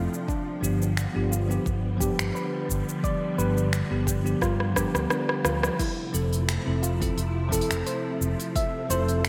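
A bell-like tine electric piano, a silky string machine, a soft round pluck and a fretless electric bass open this sunny, smooth sunset chillout fragment together, with the deep house drum kit arriving at 0.1 seconds. The tempo sits at 87 BPM in 4/4 with a light swing on the sixteenths, and the harmony rests in F lydian, moving from G7 to Fmaj7 at 5.8 seconds. The electric piano carries the accompaniment with a clean, direct sound touched by vintage 12-bit sampler grit and digital delay. Alongside it the string machine holds mellow sustained chords through phaser and ensemble chorus, while the pluck spins dark, gentle arpeggios with chorus and delay, and the round, amped fretless bass carries a subtle chorus. The drum kit sits up front with smooth hats, finger snaps, rim clicks, shaker and crash under gated reverb, joined by a deep, layered electronic kick, and a drum fill leads into the Fmaj7 change. 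A lush hall reverb and bright 1980s-style digital production give the whole fragment a glossy sheen.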